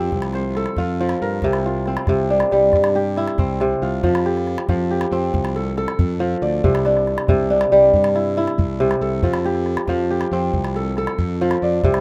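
Bright, ringing kora arpeggios sit up front in this joyful West African string piece in 12/8, carried by a round, punchy fuzz-overdriven fingered electric bass and a small calabash, all caught in a rough home-demo mix with a small-room ambience.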